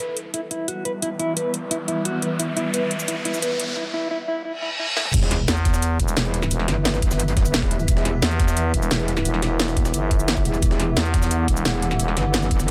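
Tense and mechanical, this dark technical drum and bass excerpt in E minor at 175 BPM builds for 5.1 seconds from a swarming detuned drone, a warbling lo-fi pad in the background, a clean, dark fingered electric guitar playing tremolo-and-delay arpeggios up front, a riser with reverse cymbal and sub drop, and a drum and bass kit with a cracking snare and metallic hats entering at 0.2 seconds. It then drops with an impact as a knocking electronic kick, a gritty pitched-up jungle sampler kit and a saturated metallic wobble bass arrive, soon joined by a thick growling FM bass, while the drone and pad pump along.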